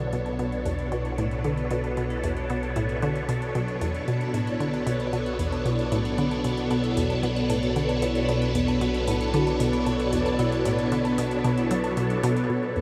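A dreamy mix soaked in huge ambient reverb opens this cosmic, hypnotic fragment of sequencer-driven space music, cut from a longer piece and moving at 114 BPM in a straight 4/4 around B minor, resting on a Bm7 chord. Up front, a bright, swirling string machine holds sustained chords with a vintage warble from its ensemble chorus, phaser and shimmer reverb. A mellow vibraphone struck with soft mallets plays arpeggios, its metallic ring carrying a medium motor vibrato through delay and shimmer reverb, while a juicy, squelchy blip pluck plays a resonant, detuned riff with a fast attack and short decay, coloured by chorus and delay. Beneath them a fat, thick analog bass sits on a low B with a filter sweep, and in the background a tape-warm electronic hi-hat and woodblock pattern adds metallic ticks through delay. The vibraphone, strings and percussion all fade in over the first 12.5 seconds, and at 12.5 s a pulsing, tempo-synced gated texture appears in the background, detuned and chorused, just before the fragment ends at 12.8 s.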